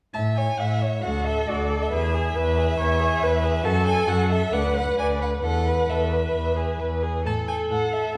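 An up-front cello with a focused, smooth-topped tone drives the bass of this cheerful, lively classical-period string quartet movement, bowed with vibrato beneath a rich-toned first violin carrying the melody and a second violin tracing a lower line. The viola joins at 1.1 s with an even, distant accompaniment as the quick, rubato playing moves from A through D and E toward F#m, Bm/D, Esus4 and F#m7/A. The quartet is heard from further back in a recital hall with a wet reverb, in a passage cut from a longer piece.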